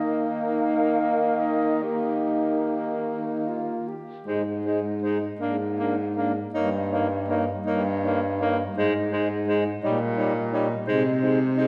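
Classical chamber music for a single-reed quartet, this short cut from a longer piece unfolds in 6/8 with a rubato, solemn and yearning feel. The clarinet carries the melody with a mellow, vintage tone, set back in the background, while a clear, close-miked alto saxophone sings a second line that also sits further back. Up front, the tenor saxophone supplies the accompaniment with a warm, vibrato-rich sound, and the baritone saxophone anchors the bass with a light vibrato. All four play together through the full 11.7 seconds, the harmony resting on Eb before shifting to Ab at 4.3 seconds and passing through seventh chords on its way back to Ab. A lush concert hall reverb surrounds the quartet with a spacious, churchlike resonance.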